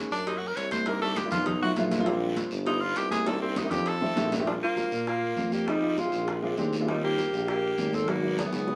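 Recorded live in one room with a moderate studio ambience, this sunny, danceable fragment of Afro-Cuban jazz opens with a punchy, edgy tenor saxophone solo full of scooped notes over an intimate grand piano with audible action noise, a soft-attack tuba with light vibrato, a vintage background bed of bright high-tuned congas and tight cowbell and bongos, and a raspy guiro, until a mellow, subtoned alto saxophone takes the melody up front at 4.5 seconds.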